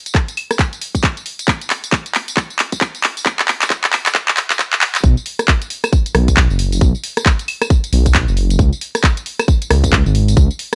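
A swung two-step shuffle drives this bouncy, late-night UK garage cut from a longer piece, with a tight, up-front electronic kick and a layered garage kit of claves, handclaps, hi-hat, rim click and tambourine building through a drum fill and filter sweep until the drop at 5.0 seconds, where a deep, rumbling, detuned saw bass with saturated, beating tone and sidechain pumping enters, all set in a dry, gritty recording with light reverb and vinyl crackle.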